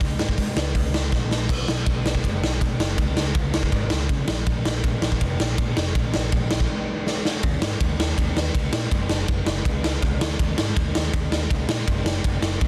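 An overdriven, growly picked electric bass and a raw, gritty garage drum kit of kick, snare, hi-hat, ride and crash open together in this urgent punk rock excerpt, driving a straight 4/4 at 162 BPM in Eb minor. The drums sit up front with a punchy kick, a medium-tuned snare and a bright, pumping stone-room sound, and their fills at 1.1 and 7.1 seconds mark the shifts into new sections. Light reverb and a dense, heavily limited modern master keep the whole thing loud and rough.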